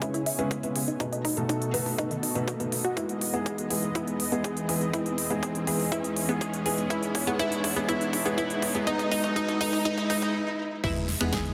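A smooth, detuned sawtooth pad with a slow attack, a nasal, phaser-tinged analog pluck arpeggio under a filter sweep, and mellow felt-muted upright piano stabs, all three pumping with sidechain and the pluck and piano trailed by digital delay, open this hopeful, expansive progressive house build-up at 122 BPM in E major over an overdriven electronic kick and a crisp big-room kit of snare, hi-hat, finger snaps and crash that plays a fill from 3.0 s before a brief stop at 10.3 s, as a very quiet riser leads to an impact and a round, deep analog bass note at 10.8 s, inside a lush hall reverb and a dense, heavily limited master.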